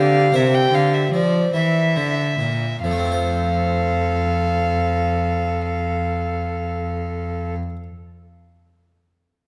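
Up front, a close, rich violin and cello, each a single gut-strung period instrument with a reedy bowed tone, carry the second line and the bass of this flowing, radiant baroque-style sonata movement in F major, in a straight 6/8 at 44-53 BPM tuned to A4 = 437 Hz. A distant, pure alto recorder with a woody chiff, crisp attack and gentle vibrato sings the melody, while a dry, close-miked French-style harpsichord with two sets of strings fills in the accompaniment from the background. The tempo slows through the opening 2.8 seconds as a C7 chord settles onto F, and the short passage, cut from a longer piece, sits in a moderate concert-hall reverb.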